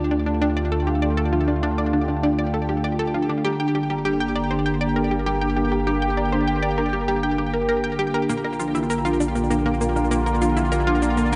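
A sweeping, detuned sawtooth pad sits up front in this expansive, hypnotic excerpt of ambient, sequencer-driven space music, moving through Dm, Gm and Bb while a bright, chorused analog pluck riff with tape character and delay, mellow soft-mallet vibraphone arpeggios ringing through delay, a deep, nasal analog bass and a pulsing gated texture in the background fill out the moderate plate reverb, before electronic cabasa and woodblock enter at 8.3 seconds.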